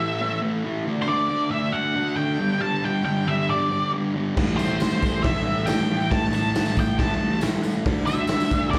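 Garage rock with a raw, menacing mood, heard as a short cut from a live club gig through the venue's PA. A thick, double-tracked fuzz guitar drives a low riff up front while a dark octave-fuzz lead guitar carries the melody with slapback echo, both playing from the start over chord changes. At 4.4 s a saturated, gritty drum kit kicks in with a punchy kick, medium-tuned snare, hi-hat and crash under a rolled-off top, and a jingly tambourine sits distant in the background from 4.6 s.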